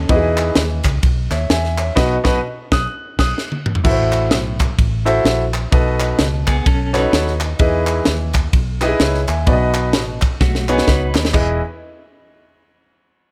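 A swung 4/4 groove at 128 BPM drives this hopeful, uplifting uptempo gospel cut in E major, where a tight funk drum kit with a high-tuned snare and a round, foam-muted vintage electric bass sit under an intimate concert grand piano with audible action noise, as hollow group handclaps join, a band accent lands at 2.0 seconds, a clean, picked electric guitar with tremolo adds brief second lines around 6.5 and 10.4 seconds, and drum fills punctuate the section changes in light reverb.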